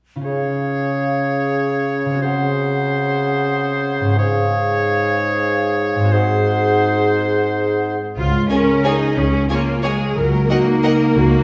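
A rubato 3/4 lilt at 166-198 BPM drives this festive, sweeping orchestral ballroom waltz excerpt in Db major: a bright, ringing, fingerpicked concert harp plays arpeggios throughout, while a present oboe, a distant clarinet and a mellow large flute ensemble carry second lines over a light-vibrato bassoon until 8.0 s. At 8.2 s bowed chamber strings take over, with an up-front cello section and a rich double bass section on the bass. At 8.5 s a focused viola section joins in accompaniment, along with two background violin sections, one clear on the melody and one dark and woody on a second line, the whole sounding in a reverberant recital hall with a faint mains hum.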